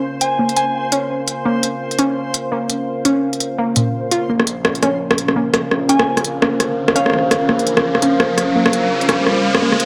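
Tense and spacious, this half-time drum and bass excerpt opens on a dark, moody analog pad holding a Bbmadd9 chord with chorus, while a warbly, dusty lo-fi pluck arpeggiates through chorus, cassette tape wear and dub echo, and a reversed, dreamy granular texture glows brightly until 4.3 seconds. An up-front organic electronic drum kit with smooth, overdriven hi-hats and rim clicks drives the swung groove, as a soft, pure FM bell drifts in briefly with chorus and dub echo. From 4.3 seconds a very quiet, swirling phased saw bass thickens the low end in a build-up, and an electronic riser climbs from 6.6 seconds inside a moderate digital room.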